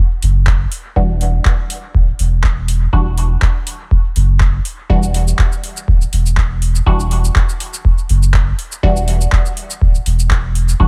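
A dry, close-sounding mix carries this nocturnal, hypnotic dub techno, a short slice of a longer piece with a lightly swung sixteenth-note feel. A round, soft sub bass built from triangle and square waves sits up front with sidechain pumping, entering together with a booming analog drum machine whose metallic hi-hats, handclaps and shaker trail into dub echo. A deep, tape-warm electronic kick joins at 0.5 seconds. From 1.0 seconds a muted, detuned sawtooth chord stab with a filter pluck and short decay voices an Em9 chord, thickened by chorus and phaser and carried by its own sidechain pumping and dub echo.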